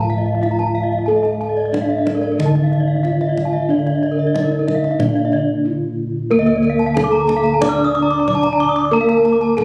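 Brilliant and hypnotic, this straight 92 BPM Balinese gamelan passage in D pelog, cut from a longer piece, sets a bronze metallophone melody with tape echo over a lower metallophone accompaniment, two high ringing metallophone arpeggio lines with shimmering paired-tuning beats, round, up-front bossed gongs carrying the bass and a tight, dry kendang, all in a recital hall reverb, with a break from 5.3 to 6.3 seconds before the section repeats.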